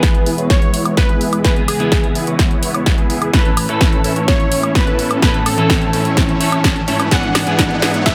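A straight pulse drives this uplifting, triumphant build-up of festival progressive house, cut from a longer piece, with a punchy, up-front electronic kick anchoring a big-room kit whose layered snare, hi-hat and woodblock play a drum fill through the whole passage. A huge, euphoric supersaw lead carries the riff, its detuned sawtooth tone bright and compressed, with sidechain pumping and shaped by a low-pass filter sweep and tape echo. Alongside it, a catchy plucky unison lead sings the melody with a sine and noise layer under its sawtooth edge, also trailing tape echo. A clean, picked electric guitar adds accompaniment with ensemble chorus and sidechain pumping, while a very quiet, lush symphonic string section holds bowed sustained chords with vibrato as the harmony moves from E to A and on to E/G#. From 1.7 seconds a faint electronic riser climbs beneath the mix until the close at 8.1 seconds, all set in light digital reverb.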